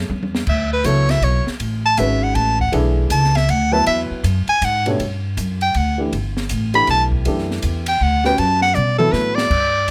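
Close, detailed microphones and a light reverb frame this short cut from a longer modal jazz piece. It moves at 159 BPM in a swung 3/4, with a hypnotic, searching mood that settles into G lydian from 5.0 s as the harmony shifts from Esus4 to Gmaj9 and then Dadd9. A bright soprano saxophone takes the solo from 0.5 s, sitting up front with a soft attack, vibrato and a jazz-style voice. Beneath it, a pizzicato upright bass with gut strings sounds woody and thumpy. A dark, mellow baby grand piano comps with short sustain and audible action noise. An open acoustic drum kit in a studio room, with dark cymbals, a high-tuned snare and a boomy kick, opens with a fill and plays another at 8.8 s.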